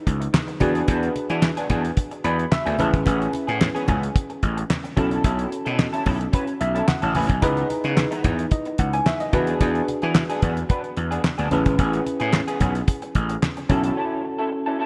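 A damped 70s drum kit sits up front in this early-eighties boogie funk groove at 110 BPM in a straight 4/4, its fat snare, tight kick, hi-hat and handclaps sounding dry and dark with a rolled-off top. Up front alongside it, a gritty slap bass growls with bright, punchy overdrive, while low-tuned congas with a thick skin add a close, acoustic pulse further back. A worn, slightly out-of-tune tine electric piano carries the accompaniment through a lush chorus and a combo amp, stepping forward with short fills around 2.0 and 6.3 seconds. An electric guitar through a small old amp plays a compressed, slightly broken-up riff with a lo-fi, fingered feel and a touch of analog chorus. The harmony cycles through C#m9, E7, Amaj9 and B9sus4, giving this section cut from a longer piece a late-night, danceable mood, framed by a moderate, lush hall reverb and a bright 1980s-style digital polish.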